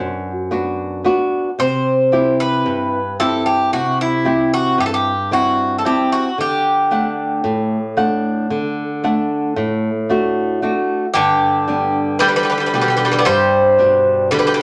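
A fingerpicked acoustic flamenco guitar opens this calm, tender Greek folk piece in a straight 9/8, and at 1.6 seconds a bright, picked bouzouki with double strings enters up front carrying the melody over chords moving from Bm through C to D. At 11.2 seconds a second bouzouki joins on a lower line with its own metallic, partly octave-doubled strings as the harmony arrives on G. The whole passage sits in a wet club reverb and is cut from a longer piece.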